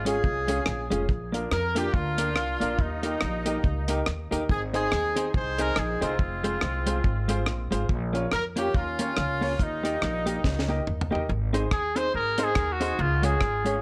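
A punchy trumpet with vibrato takes the lead from 11.7 seconds in this cheerful, upbeat ska excerpt at 141 BPM in Ab major, following a horn section with light vibrato that carries the swung melody through analog delay until 10.9 seconds, over thumpy pizzicato upright bass, clean compressed electric guitar, short upright piano stabs and a dry, dark reggae drum kit with a high-tuned snare that plays a fill just before the solo.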